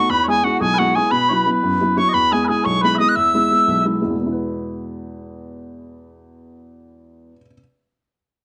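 Bright and rollicking, this short Celtic folk fragment moves in a lilting 6/8 with a straight feel. A wooden whistle carries the melody up front, its pure, chiffed tone tongued crisply and touched with vibrato, before it stops at 3.9 seconds. Beneath it, small bagpipes play a sweet, continuous second line with their own vibrato, dropping out at 3.8 seconds. A dark baby grand piano supplies the accompaniment through to 7.6 seconds, boxy and intimate with short sustain and audible action noise, sitting close to the listener. The harmony moves from E to Bsus4 and back, and a moderate spring reverb with small-room ambience gives the ensemble a snug, lively space.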